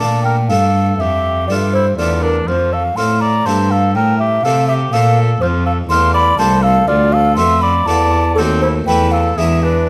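An airy, close-miked baroque flute sings an expressive, vibrato-touched melody over a smooth-topped oboe second line, a brilliant Flemish-style harpsichord and a bowed gut-string cello bass in this grave yet flowing baroque-style sonata movement in a rubato 3/4, set in a moderate recital-hall reverb and closing on an E7 chord at 9.4 seconds.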